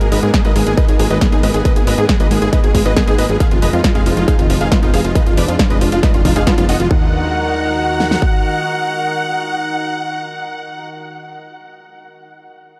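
A tape-warm analog drum machine whose hats pump with the sidechain until 6.9 s opens this bittersweet, euphoric uplifting trance excerpt at 137 BPM in Eb harmonic minor, soon joined by a punchy, up-front big-room dance kit of kick and huge snare. At 6.9 s the drop gives way, over chords moving from Abmadd9 through Fm7b5 to Ebm. A huge, thick, detuned supersaw carries the melody with vibrato, cassette-tape colour and diffuse ambient delay, while a bright, lush unison pad with chorus and 12-bit sampler grit sustains chords in the background. A tight, driving sequencer bass with ring modulation stops at 8.2 s, a round, very quiet analog pluck arpeggiates, and the dreamy mix is soaked in huge ambient reverb.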